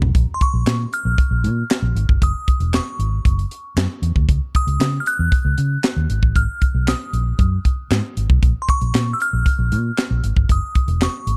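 Danceable and funky, this early-eighties boogie funk clip pairs a tight, dry drum kit, with its high-tuned snare, handclaps, hi-hat, toms and a tight kick, with a round, foam-muted fingered electric bass that sits up front with a dark, amped tone. From 0.3 seconds a glassy FM synth bell plays a crystalline high melody with fast-attack, decaying notes, coloured by chorus and tape echo and set back behind the rhythm section. The harmony moves from Bbm through suspended chords and Abm9 to Bb5 before returning to Gbsus2, all in a small room with a dark, warm production.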